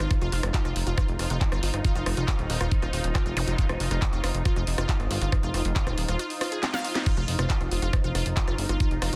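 A knocking electronic kick drum sits up front in this intense, alien stretch of psychedelic trance, cut from a longer piece in a straight 4/4 pulse. Beside it, a punchy, funky analog bass built from sawtooth, square and sine waves, with wave-folding and a filter pluck, holds the low end, also up front. A detuned unison pluck carries the riff, lush and ring-modulated with a filter sweep, digital delay and sidechain pumping, while a layered drum kit adds a cracking snare, bright hi-hats, handclaps, rim clicks and crash cymbal, with a drum fill at 6.6 seconds. In the background, a swarming, granular drone sustains tense, evolving chords with vintage 12-bit sampler grit, and a warbling, nostalgic lo-fi pad with chorus and a dark sub octave floats behind it, both pumping with the sidechain. Very quiet electronic zaps and swells appear at 3.4 and 6.4 seconds, and the dense, heavily limited master keeps the sound dry.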